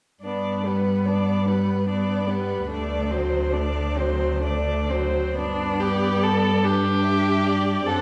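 Heard from further back in a reverberant recital hall, this short cut from a longer slow romantic movement for string quartet in G major moves at 40-50 BPM in a rubato 6/8, lyrical and tender. A focused first violin carries the melody with vibrato, while the second violin sits up front with a second line. The viola adds warm, expressive accompaniment with portamento, and a smooth, rich cello, also up front, holds the bass; the harmony shifts from G to D7 at 2.7 seconds and returns to G at 5.4 seconds as a new section begins.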